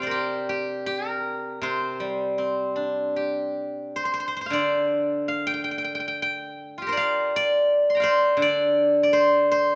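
A silvery, ringing steel-string zither, played with fingerpicks, carries this brief excerpt of Chinese traditional solo music alone from 0.0 to 9.8 s, spanning a range from low to high registers. The mood is elegant and longing, with a free, rubato feel in four. The instrument sits up front in a moderate recital-hall reverb that gives its acoustic tone a gentle bloom.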